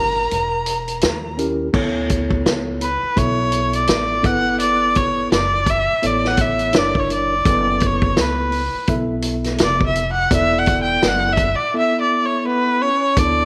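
A loping 84 BPM groove in 4/4, swung at 59% on the sixteenths, sets up this smoky, laid-back jazz-hop piece, cut from a longer track. After a short break opening, a vintage drum kit sits up front with a punchy kick, a medium-tuned snare, hi-hat, crash and dark cymbals. A woody pizzicato upright bass with tube saturation anchors the low end, and a mellow tine electric piano fills in clean chords such as Dsus2, Gmaj9#11 and E7sus2. A rich, bowed erhu carries the melody and takes a solo from 1.7 seconds, its earthy, biting tone shaped by light vibrato and portamento. A breathy, close-miked trombone adds a jazz-style second line at the edges of the piece, returning at 12.5 seconds after the drums drop out at 11.7 seconds, all within a light studio reverb.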